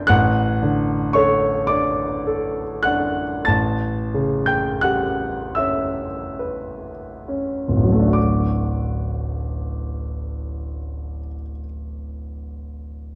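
A serene, dreamy romantic classical nocturne for solo grand piano in D major, tuned to A4 = 439 Hz, drifts in a rubato 12/8 at a very slow 22-38 BPM of dotted quarters; the smooth, vintage piano sits up front in a dark, warm production with a moderate scoring-stage reverb, slowing through its opening as the harmony moves from D over A to A9 before settling on D when a new section begins at 8.2 seconds, in a brief cut from a longer piece.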